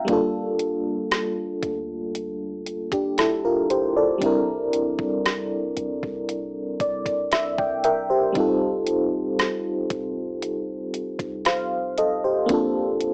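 A slow, straight 4/4 pulse at 58 BPM comes from a detuned 8-bit digital drum machine, its thumpy kick, hi-hat and rim click overdriven and sitting up front with a sampler-style, electronic grit. This contemporary R&B fragment in G dorian, cut from a longer piece, carries a longing, moody feel. An FM electric piano with tremolo leads the accompaniment, full-bodied and dark with a noise layer, moving through Gm7, C7 and F7/C before landing on Bbmaj7 near 12.5 seconds. The piano steps forward with a fill between 6.3 and 8.4 seconds, while a clean, sine-like 808-style bass sits deep and boomy in the background. Moderate reverb and a cassette-tape, small-speaker character give the whole recording a homemade, lo-fi intimacy.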